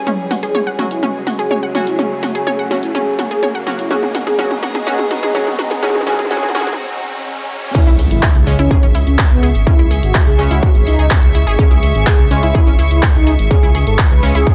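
This hypnotic, cinematic melodic techno excerpt opens mid-build with an intimate chamber string section holding sustained chords under a filter sweep, while a lush, detuned unison pluck spins arpeggios through tape echo in the background, a riser builds and a nostalgic lo-fi pad hovers. Almost at once a round, brassy synth melody arrives with chorus and analog delay, together with an overdriven analog drum machine playing a fill of toms, handclaps, hi-hat and crash, and the two are soon joined by nasal, phased brass stabs. The pad falls away at 6.8 seconds for a brief break before the drop lands at 7.7 seconds with an impact and a distorted, layered kick up front. Just after the drop, a deep, rumbling, beating saw bass enters. Sidechain pumping breathes through most parts, and the recording is dry and gritty, with the character of cassette tape from hardware.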